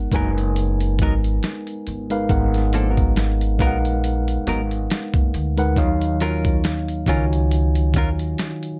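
The recording sounds dry and close, with a light plate reverb on the electric piano and the guitar. It is a smooth, soulful slice of neo-soul R&B in 4/4, cut from a longer piece, with a gentle swing on the sixteenths. A gritty, compressed, pitched-down boom bap drum kit sits up front, pairing a thumpy kick and a medium-tuned snare with hi-hat in a tape-warm sampler style. A woody pizzicato upright bass on gut strings holds the low end beside a mellow, clean tine electric piano that carries the accompaniment. A dark, picked hollow-body electric guitar adds a compressed second line. The harmony rests on Abm9 and moves to Ebm9 at 5.8 seconds.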